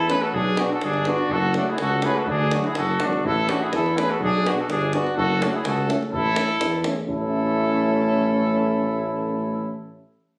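A roomy, distant cornet carries the melody up front in this festive, virtuosic Balkan brass band excerpt, joined by a soft-attacked trumpet second line with light vibrato, a mellow tuba bass, a clear euphonium and a close-miked trombone with vibrato filling the accompaniment, and a tight, dry davul that drops out at 7.3 s, captured on a phone in the room with light reverb and compression.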